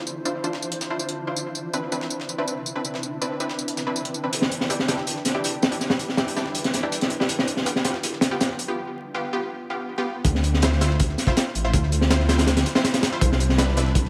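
Light room reverb and vinyl crackle frame this nostalgic, atmospheric drum and bass and jungle excerpt at 162 BPM in D dorian, where a blurred granular cloud pad holds chords from Dm9 to Cmaj9 under pitched-up, tape-warm sampler breakbeats with high-passed hats, snare and tambourine sitting in the background, bold orchestra-hit-like saw stabs with dub echo cut through, a gritty up-front breakbeat kit with a tight kick and high-tuned snare enters at 4.3 seconds, and after a break at 8.8 seconds a rumbling detuned saw bass arrives at 10.2 seconds, just ahead of the drop at 10.3 seconds.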